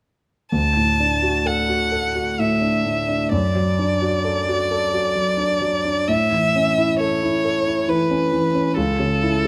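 Serene and warm, this romantic classical passage for violin and grand piano unfolds in a gentle three-beat metre with a loose, rubato feel. A single bowed violin carries the melody in a rich, even tone with vibrato, while the dark, mellow grand piano supplies a smooth, vintage-tinged accompaniment; both sit up front from 0.5 to 9.5 seconds. Close, detailed miking and a light touch of reverb frame this short cut from a longer piece.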